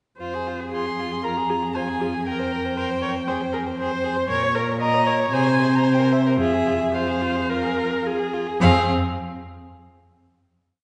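In a straight 4/4 pulse at 107-118 BPM, this short, quick classical-period piece for string quartet in F minor feels dramatic and restless. The cello, viola and second violin enter together at 0.2 seconds: the close, up-front cello holds a sustained bass line, the second violin plays a smooth, even rocking two-note figure along with sustained chords, and the warm viola adds an expressive counter-melody with vibrato and portamento, answering at phrase ends. At 0.7 seconds the first violin takes the melody high above them, its bowed tone focused with a silky top. The harmony moves from F minor through C5/F, B-flat minor and A-flat add9 over C before returning home, and at 8.6 seconds the quartet settles onto a closing F5 chord. A wet scoring-stage reverb places the listener further back in the room, so the lines blend into a full, resonant ensemble sound.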